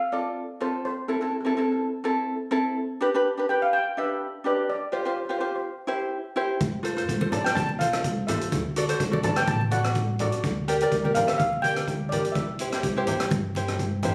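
Calypso in F major at a carefree, bouncy 125 BPM with a light swing, this short fragment of a longer piece opens with a shimmering, close-miked double-seconds steel pan struck with hard rubber sticks carrying the melody over a fingerpicked acoustic ukulele, before a woody pizzicato upright bass and a street-band drum kit with a boomy kick, rim click and hi-hat under a rolled-off top join at 6.6 s, and low-tuned, thin-skinned congas add a bright edge from 7.2 s, the whole captured on a phone in the room with moderate studio reverb.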